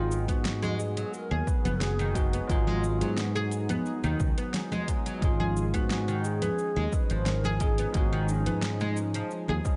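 A dark, lightly reverberant mix with a rounded top end carries this earthy organic downtempo excerpt at 88 BPM in G# dorian, moving from G#m7 to C#add9/G# at 5.2 s. A distant, mellow bass bansuri sings the tongued melody with vibrato through a digital delay, while a woody, plectrum-plucked oud spins arpeggios through tape echo. A bell-like tine electric piano sits in the background with sidechain pumping and tape echo, and a very quiet, detuned sawtooth pad with chorus holds soft chords. An up-front fretless electric bass with sidechain pumping anchors the low end beneath a deep house kit of congas, hi-hat, shaker and fat snare, joined at 0.3 s by a punchy electronic kick, both overdriven and treated with studio reverb.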